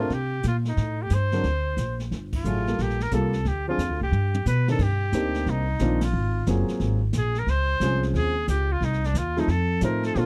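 A clear, vintage-toned trumpet carries the melody with vibrato in this cool, late-night small-group swing and bop cut, its solo line sitting up front over a woody, thumpy pizzicato upright bass and a warm grand piano comping with short sustain. A brushed jazz kit with dark cymbals, a medium-tuned snare and a punchy kick supplies the swung pulse, adding a fill from 4.1 to 4.8 seconds, while the whole band hits accents at 2.3 and 6.0 seconds. The close, dry studio sound carries a 1970s feel with a touch of small-room ambience, and rich extended chords move from the opening section into a second section.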